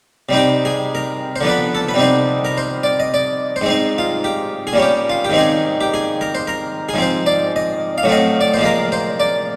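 Classical, baroque-style suite movement in C minor, flowing and grave, moving in 3/4 at 109 BPM with a rubato feel and cut from a longer piece. A solo Italian-style harpsichord, plucked and brilliant with octave strings, sits up front from 0.3 to 9.6 seconds, ranging from Ab2 to F5 through harmonies such as Cm, Ab, Fm/Ab and Adim7 before settling on Bb5. A cathedral reverb with a 5.0-second decay surrounds the instrument in a wet, lingering space.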